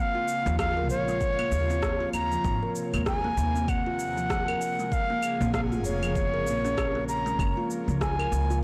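Meditative and earthy, this organic downtempo fragment sets an up-front, reedy bansuri melody with delay over a breathy, chorused pad with sidechain pumping, hollow kalimba arpeggios carrying 12-bit sampler grit and tape echo, thumpy pizzicato upright bass, a deep electronic kick from 0.6 seconds, and overdriven shaker, rim click and claves, all within a blown-out, overdriven recording touched by light reverb.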